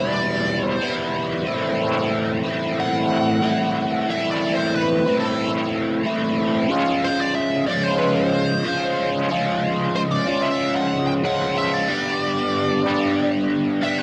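A biting, double-tracked overdriven electric guitar sits up front, picking a riff through a rotary speaker in this dark, hypnotic rock passage cut from a longer piece. Over it, a bright, smooth overdriven lead guitar picks a solo through wah and tape echo across the full 14.0 seconds, while the chords move from Em to Am, C# and G. Light reverb and a digital ambience surround the straight 4/4 groove.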